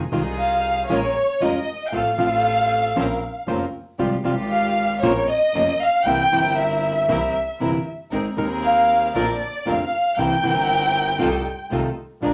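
This tango fragment, cut from a longer piece, has a passionate yet playful character and a loose, rubato feel. Up front, a fingerpicked acoustic flamenco guitar carries the accompaniment. A chamber string section punctuates it with earthy stabs that have light vibrato and a smooth top, while a lone bowed double bass sits distant underneath, even and biting. The chamber violin section takes the featured role from 0.4 to 11.7 seconds, playing a close, expressive second line with warm vibrato. The harmony moves through Fm7, Bbm7 and added-ninth minor colours to C7, then closes on F7/C, all set in a wet small room.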